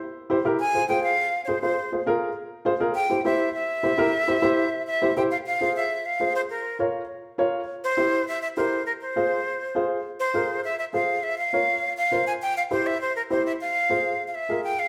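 A wet stone-room reverb surrounds this short excerpt, which sounds like a duo playing live together in one space. It is a fiery, danceable Latin piece in F harmonic minor, moving briskly at 203 BPM in a straight 4/4. A dark upright piano enters at 0.3 seconds with mellow, woody accompaniment in a compact middle range, its short sustain and audible action noise giving it an intimate, vintage character close up front. At 0.6 seconds a breathy jazz flute takes the melody, bright and metallic with a soft attack and vibrato, sitting just as near to the listener. The harmony circles around F minor, B-flat minor and C dominant chords, with a second passage beginning around 5.3 seconds and the flute carrying on until 14.9 seconds.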